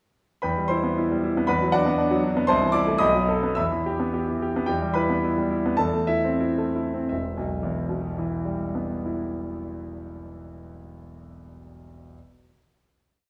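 Agitated and stormy, this short classical virtuoso piano study in E minor runs as a complete piece, its tempo pushed and pulled in rubato between 82 and 121 BPM in a 2/4 metre. A bright concert grand piano plays alone from 0.4 to 12.2 seconds, spanning E1 to E6, with a deep bass underpinning a brilliant, polished tone and short sustain. The tune is carried in filled octaves over rippling figuration, moving from E minor through a B minor chord over an E bass and an A minor chord over C to B7 before returning home. The music slows from 4.1 seconds into a brief coda that touches A minor over E, then settles on a final E minor chord at 7.1 seconds. The piano sounds up front and present, yet a wet large-studio reverb places the listener further back in the room.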